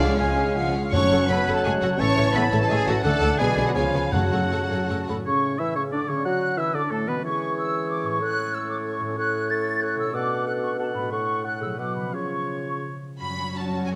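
A stormy, urgent fast romantic orchestral passage in triple time, cut from a longer piece, opens with the full ensemble: lush bowed violins with vibrato carry the melody over violas and a second violin line in the background, expressive cellos, woody double basses, a mellow, distant horn section holding chords, and background timpani. At 5.1 seconds the strings and horns fall away, leaving a clear oboe, a large, pure-toned flute ensemble, a mellow clarinet and a dark, close bassoon weaving around ringing, bright harp arpeggios in a free rubato. The violins, violas and double basses return at 13.2 seconds, with the cellos joining at 13.6, all heard on a scoring stage with moderate reverb and close, detailed microphones.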